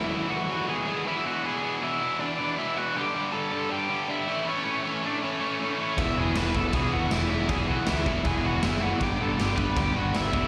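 A high-gain, distorted lead guitar with slapback and tape echo carries the melody over a bright, tightly picked distorted riff with slapback echo from the opening of this upbeat, energetic punk rock clip, moving through E, G5 and A chords, until at 6.0 seconds a growling overdriven bass, an overdriven semi-hollow guitar with slapback echo tucked in the background, and a raw garage drum kit, gritty and up front with a punchy kick, medium-tuned snare and crashes in a pumping stone room, join in, all heard as a live gig through the venue's PA with recital hall reverb.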